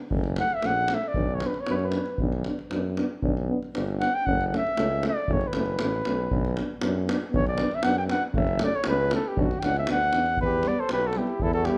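A straight 2/4 pulse at 117 BPM in B minor drives this fiery, bittersweet Balkan brass band fragment: a deep, distant davul keeps the beat while a clear, punchy tuba sits up front on the bass, a pair of mellow euphoniums (one with light vibrato) hold background accompaniment, and a smooth-topped flugelhorn carries the solo melody from 0.4 seconds onward. A dark, softly attacked trumpet with light vibrato joins on a second line at 10.4 seconds as the harmony moves from alternating F#m and Bm to Em, all set in a moderate recital hall reverb.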